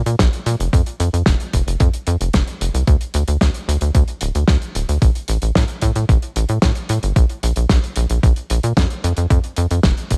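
A straight 4/4 pulse at 112 BPM drives this bittersweet, nostalgic italo disco excerpt, anchored by a thumpy, sampler-style electronic kick with a tape-warm, small-room character sitting up front. A damped 70s acoustic kit adds hi-hat and a fat, dry snare with a rolled-off top, both kit and kick touched with studio reverb. Underneath, a tight, punchy sequencer bass blends sawtooth and square-wave tones into a saturated filter pluck with a fast attack and decaying notes, running from D1 to Bb2 and driving the groove from the front of the mix.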